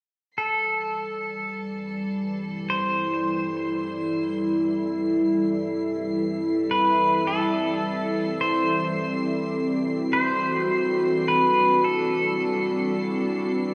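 Ambient piece in A minor at a slow 52 BPM in straight 4/4, spacious and reflective, heard as a short cut from a longer work. A clean, twangy pedal steel guitar carries the melody up front from 0.4 seconds, played with fingerpicks and slide in volume swells between A4 and C5, its compressed electric tone trailed by shimmer reverb and delay. From 1.4 seconds a warbly, tape-like pad holds sustained chords up front, its dark, detuned square and triangle tones with a sub octave giving a nostalgic lo-fi, vintage character, softened by chorus and shimmer reverb. Beneath it, a calm organ-like drone of detuned sine tones sits low and quiet between E3 and G3 with ensemble chorus, while a rich, earthy chamber violin section fades in from far off on a high C7, bowed with light vibrato and bathed in shimmer. The harmony rests on Am7 before moving to D7 at 9.6 seconds, all set in a wet concert hall reverb that lends the sound a lingering, airy depth.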